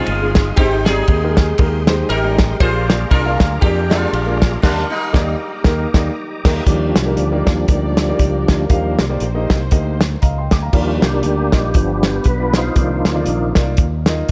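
A bright, buzzing sitar with shimmering sympathetic strings carries the melody over woody upright piano and a clean tonewheel organ with key click, fast rotary speaker and chorus vibrato, while fingered electric bass and an up-front soul drum kit with a fat snare and dark cymbals drive this jubilant, hopeful uptempo gospel excerpt at 118 BPM in Eb major with a swung feel. The sitar drops out at 6.4 seconds and the organ takes a solo, joined by a lush bowed string section in the background from 6.7 to 10.7 seconds, before an upright piano fill leads into more organ soloing. The dark production sits in a small room with light reverb.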